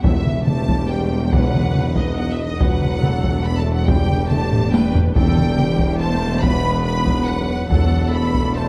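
Distant taiko drums struck with hard sticks open this dramatic, heroic cinematic score at once, with the full orchestra sounding from the first beat in E minor at 141 BPM in a straight 3/4. A lush symphonic violin section carries the melody with focused vibrato and a smooth top, joined in the background by a chamber violin section on a second line, while a viola section, entering at 0.5 seconds, fills in even, bowed accompaniment. The bass is anchored by background cellos and a distant double bass section holding low E, joined by a mellow, roomy tuba. Very quiet French horns and background trombones sustain chords over a harmony that circles Em, B/E, D/E and G/E above that pedal. Close timpani with medium mallets sound at the start and return after a taiko fill at 4.5 seconds, and a moderate concert hall reverb gives the passage, cut from a longer piece, a grand sense of space.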